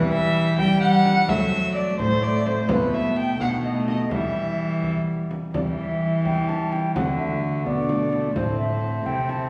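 In a straight 6/8 at 85 BPM counted in dotted quarters, this courtly, rustic renaissance-style consort dance in E minor sets an airy, wooden baroque flute on the melody above a dark, distant gut-string violin playing the second line. A mellow, fingerpicked concert harp rings in the background beside a close, nasal viola, while a rich, up-front cello with light vibrato holds the bass and a deep frame drum joins at 0.6 seconds. Recital hall reverb surrounds the ensemble as the harmony moves from E minor through B7 toward D and A minor in this passage cut from a longer piece.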